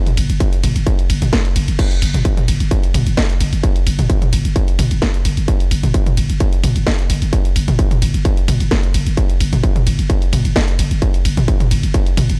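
Dry with little reverb, this excerpt of driving peak-time techno has an industrial edge, built on a distorted, up-front electronic kick that sits loudest, a growling, buzzy 808-style bass with tube saturation, low-pass filtering and sidechain pumping, and a layered techno drum kit of cracking snare, hats, ride, crash and toms, with the hats, cymbals and toms pumping under sidechain.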